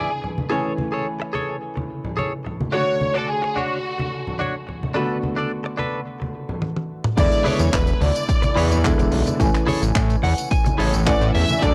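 This sunny, groovy nu-disco excerpt has the soft haze of a home cassette recording with light reverb. A lush, bowed violin section carries the melody with vibrato and a smooth top, touched with cassette tape grain and tape echo. Beneath it, a dark, worn grand piano comps intimately, its action noise audible through its own tape echo, while a twangy, direct-recorded clean electric guitar picks a compressed riff with subtle chorus and bright congas ring from a distant, large room. A tight funk drum kit, dry and acoustic with bright cymbals, handclaps, hi-hat, tambourine and toms, arrives with a fill at 6.6 seconds. At 7.2 seconds the drop brings in a punchy, layered electronic kick and a fat, detuned sawtooth bass, saturated and up front with a filter sweep, before the guitar adds a fill at 10.0 seconds over seventh-chord harmony.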